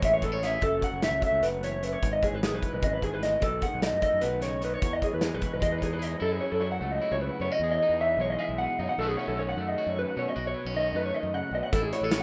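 Intricate and playful, this math rock and midwest emo excerpt moves in a straight 7/8 through chords such as Amaj7, F#m7 and B9, with a rough home-demo feel and light reverb. Up front, a picked, compressed, lo-fi guitar through a small old amp plays arpeggios with lush chorus and tape echo, over a twangy, fingered guitar at the edge of break-up and a growly fuzz bass. A loose acoustic indie kit with a tight kick and a pumping small-room sound plays hi-hat, kick and snare until 6.1 seconds, then returns at 11.7 seconds.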